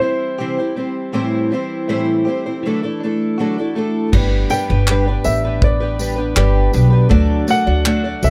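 A dry, close-sounding passage of easy-going, heartfelt acoustic pop in G major at 80 BPM, cut from a longer piece. A mellow, vintage upright piano carries the melody over a boxy, shimmering fingerpicked twelve-string acoustic guitar up front, while a direct-recorded electric guitar adds bright, clean arpeggios in the background. At 4.1 seconds, three parts join: a growly pizzicato upright bass, a natural country drum kit with a punchy kick, dark cymbals, handclaps and tambourine, and a soft, flute-like tonewheel organ holding chords through a slow rotary speaker.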